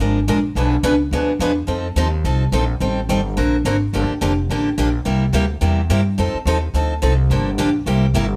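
A bright, picked steel-string acoustic guitar and a woody, growly pizzicato upright bass open together up front in this charming, lively excerpt of jazz manouche swing at 214 BPM in F mixolydian, moving through chords from Bb7 and Bdim7 to F7, Gm7 and C7 in a moderate studio reverb until the guitar stops at 8.3 seconds and the dark, thumpy bass at 8.4 seconds.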